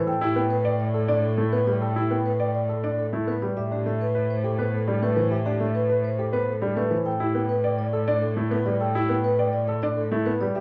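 A mellow vibraphone played with soft mallets carries the melody over a clear, long-sustaining grand piano accompaniment, opening this hypnotic, urgent fragment of minimalist classical pattern music at 103 BPM in 3/4. From 0.1 seconds a polished baby grand piano adds arpeggios and a rich, bowed cello with smooth vibrato holds a low A beneath a single Em7/A harmony. Light reverb and the warble of worn cassette tape, with its drifting pitch, give the recording an aged, dreamlike haze.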